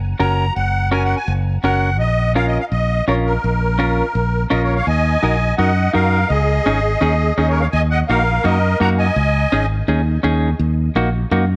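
A straight 4/4 cumbia groove drives this fiery latin excerpt at 167 BPM, cut from a longer piece. A fingered electric bass anchors the low end from the start, direct and up front, running until 11.6 seconds. A musette accordion carries the melody from 0.2 seconds, its reedy, shimmering wet tuning colored by tape echo and a boxy small-room character, before it stops at 9.7 seconds. Beside it, a clean, compressed semi-hollow guitar plays fingered accompaniment with a hollow-body tone. The harmony opens on Gb and Bbm, then moves at 4.9 seconds into a second section alternating Ebm and Dbsus2, all set in a moderate echo chamber reverb that gives the driving band a studio sheen.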